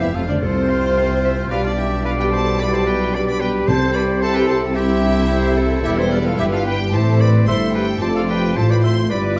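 Spirited, lively classical-period orchestral music, cut from a longer movement, with a rich, vibrato-laden violin section carrying the melody up close while clarinet, a very quiet airy flute group, a clear oboe and a softer second violin section play supporting lines alongside distant, smooth violas. Dark French horns hold sustained chords and a punchy, roomy trumpet section adds stabs in the background, over a bass of even cellos and a lush, up-front double bass section that enters at 0.1 seconds. Hard-mallet timpani strike at the opening and again at 3.7 seconds, all set in a wet stone room reverb with a dark, warm production.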